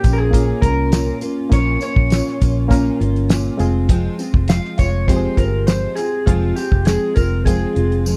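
A cloth-damped, thuddy drum kit sits up front in this mellow, lonely indie bedroom-pop excerpt, its fat snare, tight kick and hi-hat sounding dull at the top in a small room. The piece moves at a straight 101 BPM in 4/4 in Bb dorian, shifting from Bbm to Fm at 3.6 seconds. A vintage, foam-muted fingered electric bass, dark, round and punchy, also sits close, while a fingerpicked steel-string acoustic guitar with fresh strings adds a gentle bed treated with analog chorus and vibrato. A reed electric piano, worn and slightly out of tune through its built-in speakers, carries a cassette-tape character, and a faint, jingly tambourine glints in the background. Over them, an electric guitar through a small old amp plays the lo-fi, slightly broken-up melody with subtle chorus and slapback echo, in a dry, close recording with a 1970s studio feel.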